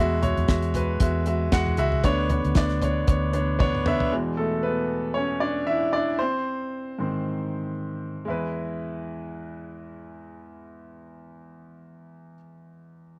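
Uplifting piano-driven pop at 116 BPM in E mixolydian with a light sixteenth-note swing, cut from a longer piece, where a clear, up-front grand piano is joined briefly by a dark, round, foam-muted fingered electric bass and a damped 70s drum kit with a fat snare and tight kick, whose fill at 3.6 s leads into the piano playing alone from 4.1 s to 8.3 s, all captured as a close, dry 1970s-style studio recording.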